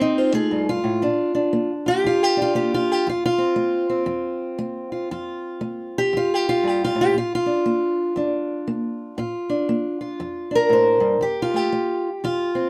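Swaggering and laid-back, this short blues fragment is cut from a longer piece and rolls along with a loose, swung feel. The only voice is a fingerpicked old ladder-braced acoustic guitar, playing solo and sitting up front in the sound. Its tone is warm and boxy, with finger squeak adding a lived-in, human texture. The harmony moves between F and Bb, settling back on F at 11.2 seconds. A light reverb gives the feel of players sharing one room live, lending the brief performance an unpolished, intimate presence.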